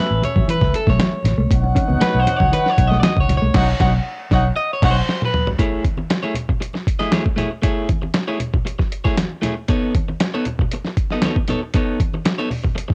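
A straight 4/4 funk groove at 117 BPM carries this sly, lo-fi cassette excerpt, where compressed, pitched-down sampler-style drums with a thumpy kick and bright, thin-skinned congas run throughout, a round, foam-muted fingered bass with transformer saturation and a dark clean guitar riff play alongside a distant, punchy horn section over F#m7 and Badd9 through a clean guitar solo and a band accent from 3.5 s, and after a drum fill the slightly broken-up picked guitar carries on alone with the drums and congas over Amaj7 and B9 from 5.6 s.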